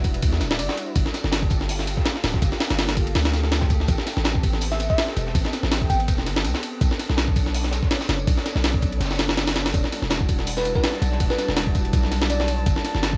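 A gritty, pitched-up breakbeat with a thumpy kick drives this raw, atmospheric jungle cut over a deep, sine-like 808 bass, a very quiet dark second kit adding tambourine, a silky warbling string machine holding chords, bell-like FM electric piano phrases treated with phaser and dub echo, and a glassy drifting texture entering at 10.4 seconds, all heard on a lo-fi cassette home recording where the kick drops out from 9.0 to 9.7 seconds.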